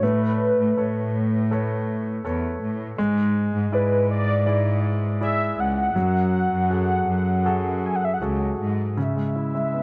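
A melancholic pop ballad in F# minor at a slow 81 BPM in straight 4/4, this short passage carries a mood of quiet longing. A velvety synth lead sings the melody between B4 and G#5, its detuned sawtooth-and-triangle tone sustained and given shimmer by chorus, tremolo and tape echo. Beneath it, a concert grand piano plays the accompaniment with an intimate, polished sound, deep bass, long sustain and audible action noise close up. A chamber cello section holds the bass line with a reedy, gut-string, period-style tone, bowed and up front, dropping out at 8.9 seconds while piano and synth continue to the cut at 9.8 seconds. The harmony moves from Aadd9 through E7/G# and F#madd9 before landing on C#m at 9.0 seconds, all set in light reverb with a dark, warm production.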